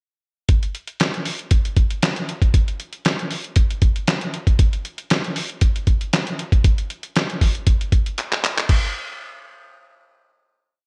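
A lo-fi, sampler-style drum kit opens at 0.5 s with a mid-tempo funk boogie beat at 117 BPM in straight 4/4, its thumpy kick, medium-tuned snare layered with handclaps, hi-hat and crash cymbal sitting up front with a late-night, slick mood. The kit sounds pitched down, muffled and compressed, with gated reverb on the drums and a digital ambience around the whole piece. A drum fill at 8.2 s leads into a final hit at 8.7 s, and the drums stop at 8.8 s.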